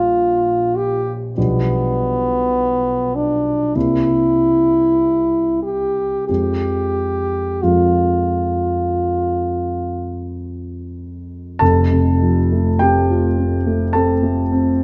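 Romantic classical music for French horn and grand piano, this solemn, elegiac passage moves slowly in 4/4 at 44-54 BPM with a flexible, rubato feel, cut from a longer piece. The clear French horn carries the melody up front with a soft attack, its tone sounding distant and roomy as it sings between B3 and G4 until it falls silent at 10.3 seconds. The dark concert grand piano accompanies throughout, mellow and deep in the bass, reaching from F1 up to A5. The harmony begins in F minor, passing through diminished and dominant-seventh colours before settling on F minor at 6.3 seconds, then brightening to F major at 11.6 seconds, where the piano carries on alone until 14.8 seconds. A recital hall reverb surrounds the duo, while close, detailed microphones keep both instruments present and intimate.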